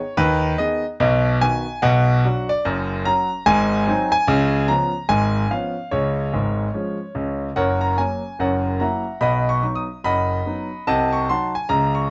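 Exuberant and playful, this short excerpt of stride piano jazz swings at 146 BPM in F# major, cut from a longer piece. A solo concert grand piano, clear and up front with a deep bass and long sustain, spans from F#1 to D#6 and moves through chords like G#m, Bm, G#7 and C#7 before a new section at 7.6 seconds brings F#7 and a closing Cdim7. Moderate club reverb gives the natural piano tone the feel of a club space.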